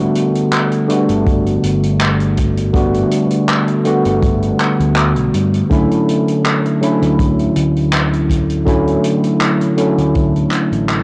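A gently swung sixteenth-note feel in 4/4 sets a woozy, faded vaporwave mood in this short clip cut from a longer piece. A barky, overdriven tine electric piano sits up front from the very start. Its gritty tone runs through a combo amp and is tinted by subtle chorus, analog delay and cassette tape coloring as it moves from Gmaj7 to Dmaj7 at 5.7 seconds. A vintage acoustic drum kit with handclaps and hi-hat arrives almost immediately, natural-sounding with a rolled-off top, while a fingered electric bass enters at 1.1 seconds with a round, direct-and-amped tone. A tight acoustic kick drum joins just after and drops out shortly before the end. The whole take carries a home-cassette character with dulled highs, light reverb and small-room ambience, and it fades out over its final moments.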